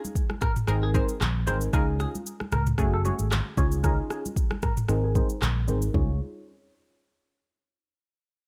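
A dry, close mix with little reverb frames this short, joyful and breezy afrobeats cut, taken from a longer piece and riding a lightly swung 16th-note feel in 4/4. An electronic, produced afro-pop drum kit sits up front, its deep kick joined by handclaps, rim clicks, shaker and toms, while very quiet congas with a thick-skinned, high-tuned acoustic tone and soft hands add a small-room color underneath. A vintage analog pluck carries the chords from the start, round and warbling with chorus, fast-attack decaying notes and a low-pass filter sweep running until 5.9 seconds, moving through Dbadd9, Abadd9 and Gbmadd9 harmonies. A clean electric guitar enters at 0.4 seconds with a twangy, scooped, compressed riff, picked and softened by a low-pass filter and analog delay. At 0.7 seconds the fingered electric bass arrives up front, amped and growly, anchoring the bright, easygoing groove as the passage tips into a new section near the end.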